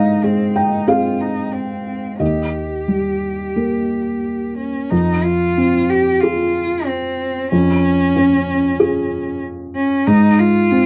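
Neoclassical piano and strings in a hopeful, tender mood, moving with a rubato feel in 4/4 through chords of Ab, Eb, Fm and Db/F before settling back on Ab. A felt-muted upright piano carries the accompaniment from start to finish, its dark, mellow tone and short sustain framed by audible action noise, while a single bowed cello sings a smooth, even second line with vibrato, rich yet somewhat distant. The sound is dry and close in a 1970s studio style with light reverb, and this short passage is cut from a longer piece.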